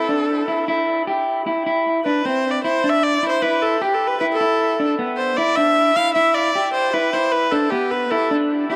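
Progressive instrumental in A minor at 154 BPM in a straight 7/4, this brooding, intricate fragment of a longer piece features a rich, smooth bowed viola carrying the melody with vibrato from 0.0 to 8.8 seconds over dark, slightly broken-up fingered electric guitar arpeggios, both up front and steeped in dub echo, moving from A5 to Em at 3.4 seconds within a wet spring reverb and small-room ambience.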